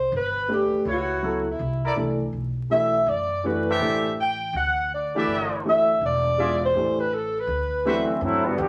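A dark, tight saxophone section carries the melody up front from 0.0 seconds, shaded with a light vibrato in a jazz style. This is a brassy, swinging slice of big band music cut from a longer piece, moving at 163 BPM in 4/4 with a swing feel on the eighth notes. A woody, pizzicato upright bass anchors the low end, while a natural grand piano supplies the accompaniment underneath. From 0.9 seconds a warm trumpet section adds stabs, and at 7.9 seconds a brilliant trombone section enters with a brief second line near the close. The harmony moves through colourful chords such as A69/C#, Bm7, E7b9 and D13, and the whole passage sits in a wet club reverb with a layer of vinyl crackle.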